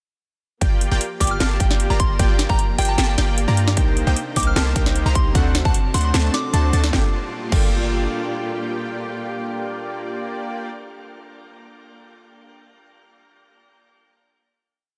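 A half-time beat at 152 BPM in 4/4 drives this short, dreamy and bittersweet future bass piece in G minor, built on a punchy, up-front electronic kick and a trap kit with a sharp, overdriven snare, metallic hats with rolls, and crash cymbal. A deep, boomy 808-style bass follows the chord rhythm through Gm7, Cm7 and D7, carrying sidechain pumping. The supersaw stab plays the main riff in airy, detuned dotted-rhythm chords with a filter sweep, pumping and tape echo, while a very quiet, bright unison pluck doubles the chords in high arpeggios. A dark, woody studio string section holds bowed chords in the background, and a soft, warbling FM bell adds a pure, vintage-toned melody with chorus and echo. Glassy digital keys enter at 3.8 seconds with rootless held chords and syncopated pushes. The drums stop at 7.6 seconds, the piece settles onto a final Gm7, and the keys ring on to 12.6 seconds, all within a dense, heavily limited mix with light digital ambience.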